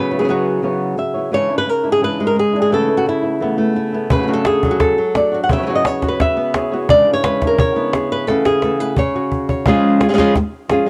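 This short cut from a longer flamenco piece opens on an up-front, fingerpicked flamenco guitar carrying the melody, joined almost at once by a second, quieter guitar playing stabs beneath it. The mood is passionate and dramatic, with a straight feel in four, and the harmony circles over a held C# in the bass through chords like Eadd9, E7, Aadd9 and D before settling on C#sus4 and then C#. At 4.1 seconds a close, woody cajon with faint snares comes in, sitting up front alongside the lead guitar. The cajon plays a fill from 8.3 to 9.7 seconds, leading into a brief closing section that rests on the C# chord. Both acoustic guitars carry a warm tone, and the whole piece has the intimate feel of a home recording on cassette in a small room.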